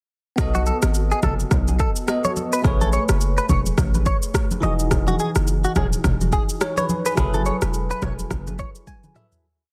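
At 0.4 seconds, a breezy, joyful afrobeats groove starts at once: an electronic, up-front drum kit with a deep, tape-tinged kick, syncopated rim clicks, shaker, toms and a softly clipped snare, plus a punchy 808-style bass whose sine tone carries a noise layer in a bouncy, syncopated line. A bell-like tine electric piano adds bright, held chords in a spread voicing through a phaser, moving from B7 through Amaj9 and Emaj9 to F#m11. A clean, direct-recorded electric guitar joins a moment later with a twangy, picked and compressed repeated figure, colored by analog chorus and tape echo. Ringing, medium-tuned congas played with soft hands sit in the background of a small room, weaving interlocking patterns beneath the kit. The whole piece fades out from 7.2 seconds, with a short electric piano fill and a closing drum fill rounding off a dense, heavily limited modern master.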